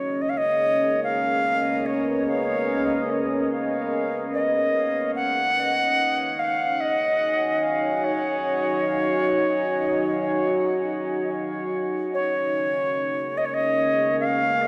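Drifting in free time, this ambient passage, cut from a longer piece, feels deep and spacious from its first moment. A deep, dark pad holds sustained chords across the whole 14.7 seconds, its detuned sawtooth body and sub octave colored by chorus, its own built-in reverb and a vintage 12-bit sampler grit. Above it, a silver concert flute sings a melody with a pure, straight tone and a crisp attack, sitting up front yet sounding distant, its phrases trailing into a dub echo. The harmony moves from Db7sus2 to Ebm7 at 5.2 seconds, then returns to Db7sus2 at 11.7 seconds. A lush hall reverb wraps the whole scene in a wet, spacious room.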